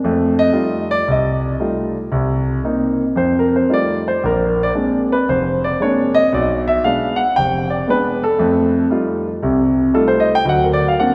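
Solo jazz piano at 115 BPM in F mixolydian, sophisticated and playful, with a swung, rubato feel across this brief 11-second passage cut from a longer piece. The grand piano carries everything alone, its tone warm, natural and up front, ranging from deep bass F1 up to G5 as it moves through F9, Cm7, Bb9 and Bdim7 before landing on a Daug7 near the end. A wet concert-hall reverb with a long 2.5-second decay surrounds the instrument, giving it the spacious ring of a church or large hall.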